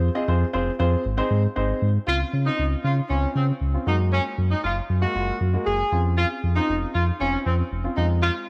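Carefree and euphoric, this dance-pop excerpt moves at 117 BPM in a straight 4/4 in D-flat major, opening on a mellow, dark baby grand piano over a deep, full sine sub bass that sits up front with a fast attack and sustained notes. At 2.1 seconds a punchy pop-style horn section enters with the melody, its ensemble sound carrying light vibrato and a slapback echo as the harmony settles into Dbmaj7 and Gbadd9 colours. A light studio reverb surrounds the short passage before it returns to F minor near the end.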